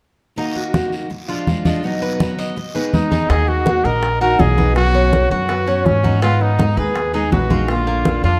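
A dark, warm studio sound with a moderate large-room reverb frames this danceable Cuban son and guajira excerpt at 164 BPM in Eb minor, where a bright, metallic tres with double strings plays arpeggios over a fresh-stringed picked steel-string acoustic guitar, low-tuned congas played with soft hands, and a raspy guiro that drops out at 3.3 s. A close-miked trumpet with light vibrato takes the solo melody up front from 2.9 s, and at 3.3 s a woody, thumpy pizzicato upright bass on gut strings arrives alongside tight, high-tuned bongos sitting in the background. The harmony moves through Ebm, Fm6, B and Abm before closing on Bb.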